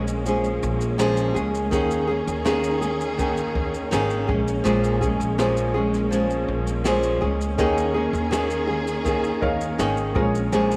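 Heard through a moderate echo-chamber reverb, this sunny, carefree acoustic pop cut at 82 BPM centres on an up-front, fingerpicked flamenco guitar with audible finger squeak, set over distant, lush bowed strings with vibrato and portamento, a woody pizzicato upright bass and a dark jazz brush kit with a boomy kick, high-tuned snare and shaker, while a soft, felt-muted upright piano with audible action noise joins in the background at 7.6 seconds as the harmony moves between Bbm7 and Eb7sus4.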